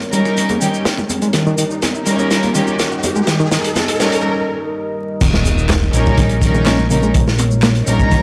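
A crunchy, saturated breakbeat kit sits up front in this energetic, swaggering breaks cut from a longer piece, its tight kick, medium-tuned snare and dark cymbals carrying a rolled-off top. Rich chamber strings, bowed sul tasto with a soft attack and a pure, floating tone, play stabs through a low-pass filter and analog delay, while a barky, reedy electric piano riff with fast tremolo and light overdrive sits further back. Beneath them a deep, moody ambient pad holds sustained chords with chorus and sidechain pumping. It is joined in the background by overdriven electronic shaker and handclaps, ringing high-tuned congas played with soft hands, and an electronic riser and impact. The opening build-up brings a riser and a drum fill before a brief break at 4.2 seconds, and at 5.2 seconds the drop arrives with a fat, detuned analog bass of sawtooth, square and triangle waves, ring modulation and a filter sweep, thickened by tube saturation. 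The whole mix has a dry, gritty hardware character with light small-room ambience and vinyl crackle.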